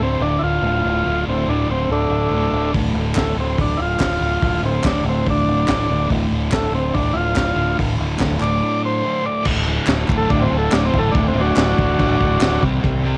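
A straight 4/4 pulse drives this raw, swaggering garage rock excerpt, where a buzzy, up-front combo organ with light vibrato carries the melody over a double-tracked fuzz guitar riff with cassette-tape coloring and a growling, overdriven fingered bass, before a dark, saturated breakbeat kit with a high-tuned snare and tight kick enters at 2.7 s, crisp group handclaps join at 3.2 s, and a new section arrives at 9.5 s, inside a small-room home cassette sound.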